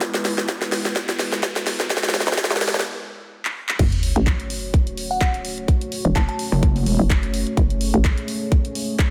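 A hollow, knocking FM bass sits up front in this aggressive, gritty bass house piece at 127 BPM, its punchy, bouncy notes pumping against a tight, layered electronic kick drum. A garage drum kit with a cracking snare, handclaps, hi-hat and crash cymbal shares the front of the mix in a studio reverb, while a deep, moody analog pad holds dark, detuned sawtooth chords with a sub octave and a slow attack underneath. The opening build-up over an E chord brings drum fills, a filter sweep and a background riser and sub drop before a brief break. The drop arrives at 3.8 seconds on F# minor with an impact. A crystalline, warbling synth bell with chorus and delay sounds from 5.1 seconds, and a heavy, saturated pluck wobble bass pulses briefly from 6.5 seconds.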